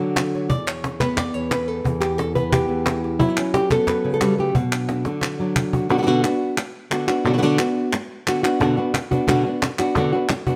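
Flamenco in a fiery, intense mood, cut from a longer piece, with an up-front, boxy fingerpicked flamenco guitar carrying the melody over snappy cajon struck with hard hands (it drops out at 5.8 seconds, at the close of a drum fill, and returns at 8.6) and crisp, dry palmas hand claps, with finger squeak audible on the strings and a moderate stone-room reverb around the sound.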